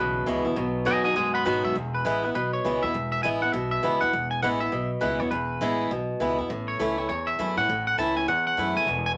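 A clean, twangy electric guitar carries the melody up front in this retro, rowdy rockabilly snippet, riding a swinging groove cut from a longer piece. A bright, boxy acoustic guitar is picked in swing style just as prominently, with audible finger squeak, while a thumpy upright bass on gut strings adds a dark, woody low end. A second picked electric guitar plays a low riff soaked in spring reverb, heard only until 1.7 seconds and again from 8.9 seconds, all set in a moderate studio room.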